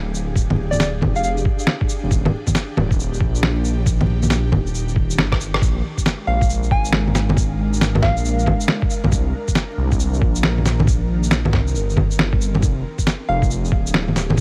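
Future garage at 137 BPM in 4/4, with a 64% swing on the sixteenths, this short cut from a longer piece feels ghostly and rainy, set in a digital ambience laced with vinyl crackle. An ethereal, airy pad holds sustained chords through ensemble chorus, phaser and its own reverb, pumping against the sidechain, while a deep, rumbling detuned saw bass sits up front with a saturated, beating edge and the same pumping motion. The drums are sampler-style and pitched down: a muffled, thumpy kick with a tape-warm tone joins at 0.4 seconds, and an overdriven kit of shaker, bongos, medium-tuned snare and rim click sits forward in the mix. A round, gentle keys-like FM lead with chorus, delay and vibrato appears only in brief phrases: first at 0.7 seconds, again from 6.3 to 8.7 seconds, and once more at 13.3 seconds. The harmony moves from Fm69 through Ebmaj7, Bb7 and Cm9 back to Fm69, with a drum fill and a band accent marking the restart of the main section at 5.6 seconds.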